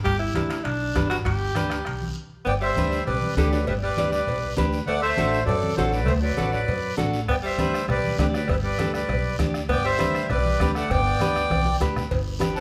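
The band plays together live in a large studio room with moderate reverb, in a festive, joyful cumbia cut from a longer piece, moving at a brisk 199 BPM in G major. A clear tenor saxophone with light vibrato and a smooth top opens with a pop-style solo over woody pizzicato upright bass, bright fingerpicked flamenco guitar with audible finger squeak, and a bed of percussion, and the group stops at 2.2 s. At 2.5 s a reedy accordion with slow beating takes the melody up front, while the saxophone continues as a second line beneath it over a harmony that moves from G to D7 and back. Among the percussion, close, low-tuned congas struck with hard hands and a soft-beater bombo sit in the background, joined by a raspy compressed guiro and very quiet, saturated timbales and cowbell with a ringing metal shell. A drum fill at 11.5 s closes the passage.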